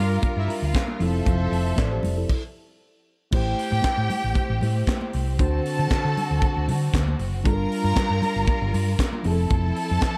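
Disco with a sultry, glamorous air, cut from a longer piece: a round, punchy hollow-body bass sits up front with a tight funk kit of high-tuned snare, handclaps and crash, while a mellow tine electric piano, a lush violin section with a smooth top, distant symphonic strings holding chords, soft-handed congas in the background and brief horn stabs that end at 2.0 seconds fill out a dark production with light studio reverb, all pausing in a stop from 2.3 to 3.3 seconds before moving from Gm7 and Fmaj7 onto Am7 and D7.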